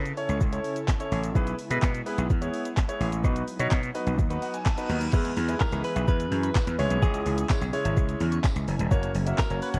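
Dance-pop at 127 BPM with a carefree, summery mood, built on a gritty, overdriven slap bass that pumps alongside an airy, breathy pad and a smooth R&B drum kit with sharp snare, handclaps and shaker, while a concert grand piano with audible action noise adds a fill and a reverse cymbal rises into a move to E lydian at 5.1 s, where a quiet woody synth pluck arpeggiates, a clean, direct electric guitar carries the melody and a distant tambourine jingles, all coloured by worn, warbling cassette tape drift in this excerpt.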